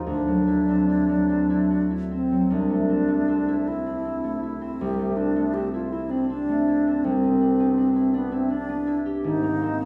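A pure, bright alto flute with vibrato and a soft attack carries the melody in this dreamy, pastoral impressionist classical duo, moving freely in a rubato 6/8. Beside it, a fingerpicked concert harp provides a ringing accompaniment, with harmonies drifting from D9 to Am/C as the second section begins at 2.5 s, then to Cmaj9 at 7.0 s and an Abadd9 at 9.3 s. Both instruments sit up front, yet a wet recital-hall reverb places the pair further back in the room in this short fragment cut from a longer piece.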